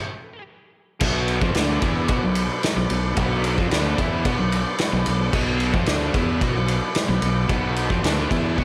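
Classic rock in B minor at 111 BPM, driving and swaggering: after a one-second stop, a crunchy, double-tracked guitar riff with slapback echo, a round fuzz bass line, a punchy vintage drum kit with dark cymbals sitting up front, and very quiet sustained chords from a shouting tonewheel organ with key click and slow rotary speaker come in together on Bm at 1.0 s, the mix set in a lush hall reverb for a big arena sound.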